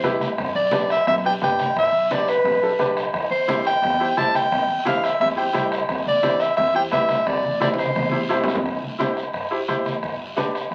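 Joyful and festive, this short cumbia cut from a longer piece moves at a brisk 174 BPM in straight 4/4, centered on C major with chords shifting from G to C and back to G. A clear, close-miked soprano saxophone carries the melody up front with vibrato in a pop style, playing until about 8.4 seconds. Beside it, a bright upright piano supplies accompaniment with a brilliant, intimate tone, short sustain and audible action noise, continuing until about 10.6 seconds. An acoustic, pizzicato upright bass with steel strings sits woody and dark in the background, while a distant bombo struck with a soft beater, ringing low-tuned congas and a raspy guiro drive the rhythm. A drum fill arrives at 7.6 seconds, leading into a new section at 8.7 seconds. The whole recording sits in a wet studio reverb and carries the surface crackle of a very old 78 rpm record.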